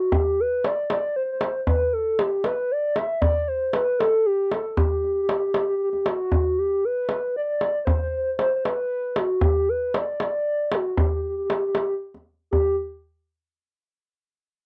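A 6/8 pulse at 78 BPM, played straight by an up-front, deep, vintage-toned tombak, carries this warm, passionate excerpt of Persian modal ensemble music in G dastgah mahur. Over it, a hollow, woody, clarinet-like synth lead with a soft attack, sustained tones, vibrato and chorus sings the melody between F#4 and E5 from the start until 12.8 seconds. The dry, close sound recalls a 1970s studio, and a new section begins at 12.5 seconds as the piece is cut from a longer performance.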